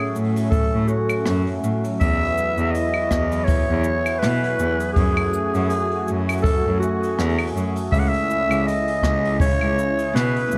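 A growling, raspy clarinet sings a scooped, vibrato-laden jazz-style melody through tape echo over bowed, rich cello bass, shimmering hammered cimbalom arpeggios with their own tape echo, and a mellow detuned sawtooth pad with chorus and gritty 12-bit sampler texture sitting in the background, while a dark, rolled-off brush kit of cabasa, claves, hi-hat and rim click is soon joined by a boomy kick in this swung, pastoral folktronica excerpt set in light small-room ambience.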